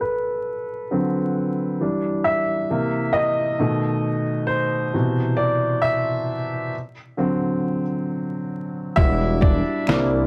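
Vinyl crackle and a small room reverb give this hazy, reflective lo-fi hip hop piece its worn, vintage air. A woody, intimate upright piano, colored by cassette tape and a low-pass filter with a filter sweep, plays alone through a swung chord progression with audible action noise and long sustain for the first 9.0 seconds. At 9.0 seconds a smooth, detuned synth bass and a muffled, pitched-down sampler-style drum kit with a thumpy kick and fat snare enter under an Em9 chord, and a close, dry finger snap sits faintly in the background at 9.9 seconds.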